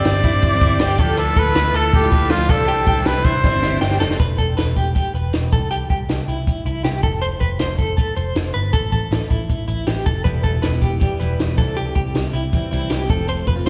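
A clear, up-front trumpet with vibrato and slapback echo sings the melody until 3.8 seconds in this bright, breezy jangly indie pop piece at 158 BPM in C major, over a reedy combo organ with heavy vibrato and a woody steel-string acoustic guitar tucked in the background, with the guitar dropping out and returning at 10.2 seconds, while a clean electric guitar picks tremolo-laced arpeggios through slapback and tape echo, a round, foam-muted vintage electric bass punches beneath, and a compact cocktail kit with a high-tuned snare plays a drum fill at 3.4 seconds, all heard as a live gig through the venue's PA in a recital hall reverb.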